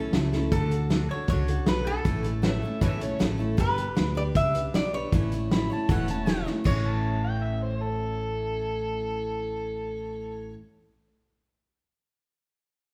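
Heard from further back in a large studio with a wet reverb, this short cut from a longer honky-tonk and classic country piece has an easygoing, sunny mood at a brisk 156 BPM in a straight 4/4, centred on A mixolydian. A lap resonator guitar carries the melody with a metallic, nasal slide tone played with fingerpicks, while a jumbo steel-string acoustic guitar provides bright, full-bodied picked accompaniment, fresh strings and finger squeak audible throughout. An upright bass plucks a woody, growly low end, and a vintage drum kit sits up front with a muffled, lo-fi small-room character, fat snare, tight kick and dark cymbals, marking drum fills before it stops at 6.7 seconds. An amplified, overdriven harmonica adds a gritty second line in a jazz style, with light vibrato, tongue slaps and scooped notes, taking a solo from 5.5 seconds. The chords move between A, D and G, and after the drums drop out the closing seconds rest on the guitars, bass and harmonica.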